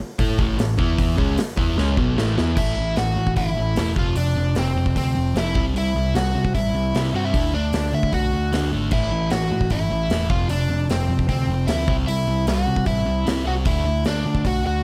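A rebellious, rowdy punk rock excerpt at 151 BPM opens with an overdriven semi-hollow guitar riff alongside a sludgy distorted guitar and a growly, punchy picked bass, while a big acoustic rock kit with bright cymbals and a punchy kick enters at 0.2 seconds and plays a fill from 1.8 seconds. At 2.6 seconds the semi-hollow guitar shifts from its riff to an up-front melody, riding over chords that cycle through A5, F5, C and D. The sound is dry, with little reverb.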